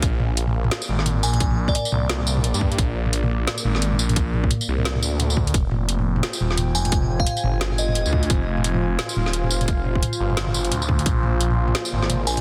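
Opening on a swirling, thick phased saw bass, a hard-clipped electronic kick, a layered kit with woody snare, metallic hats, tambourine and toms, and a deep, moody analog pad with chorus pumping under sidechain, this dark, spacious half-time drum and bass excerpt at 174 BPM swings its 16ths over Bb and Fm chords while a crystalline FM bell with tape echo sparkles in briefly at 1.2 and 6.8 seconds, the kick dropping out at 11.1 seconds within a dense, heavily limited master.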